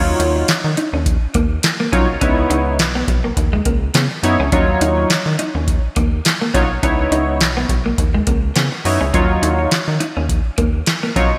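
Slick and danceable, this early-eighties boogie funk excerpt in Eb minor moves at 104 BPM with a light sixteenth-note swing, built on a booming, overdriven analog drum machine with gated reverb, deep kick, tonal snare, handclaps and metallic hats, a rubbery, bouncy square bass, a glossy chorused polysynth alternating Ebm9 and Dbm9, and a clean, compressed semi-hollow electric guitar riff treated with analog chorus, all set in a lush hall with bright digital sheen.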